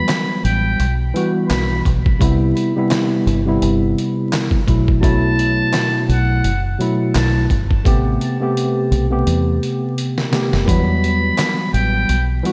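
Tough and moody, this boom-bap hip-hop excerpt rides a swung 85 BPM groove in E minor, with a gritty, pitched-down sampler-style drum kit of thumpy kick, snare, hi-hat and handclaps up front and a round, punchy fingered electric bass anchoring the low end. A worn, slightly out-of-tune tine electric piano with a cassette-tape character carries the chords from Emadd9 through Cmaj7, B7sus4 and Am9, while a breathy, buzzy trumpet with a metal mute sings an intimate jazz-style melody through tape echo. A drum fill runs from 7.9 to 10.7 seconds, and the whole dreamy mix is soaked in lush hall reverb and vinyl crackle.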